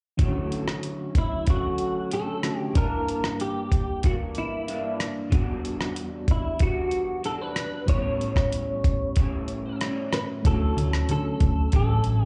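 A gritty, thumpy sampler-style drum kit sits up front in this sunny, hazy indie and bedroom pop piece at 94 BPM in D major, alongside a bright, twangy, slightly broken-up guitar through a small old amp with analog chorus and warbly pitch drift, and a reedy, worn, slightly out-of-tune electric piano with fast tremolo and cassette tape, while a clean, fingered electric guitar melody with ensemble chorus and slapback echo enters at 1.2 seconds and a dark, round, foam-muted picked bass joins at 10.4 seconds, the whole piece cut from a longer one and heard as a live gig through a venue PA with club reverb and a muffled top end.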